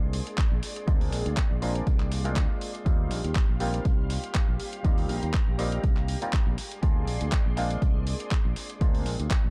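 A dark digital ambience surrounds this sunny, feel-good excerpt of filtered disco house at 121 BPM in Bb mixolydian, lightly swung on the sixteenths and moving from Bb9 to Eb69 before returning to Bb9 at 6.6 seconds. Gritty, compressed sampler-style handclaps and hi-hat re-recorded in a large room enter at 0.1 seconds, and a punchy analog electronic kick follows up front from 0.4 seconds, while a bright, direct fingered electric bass anchors the low end under sidechain pumping and a low-pass filter. A stringy, mellow clav with phaser and lush sawtooth string-machine chords with ensemble chorus and slow attack both carry vintage 12-bit sampler grit, pumping and filtering.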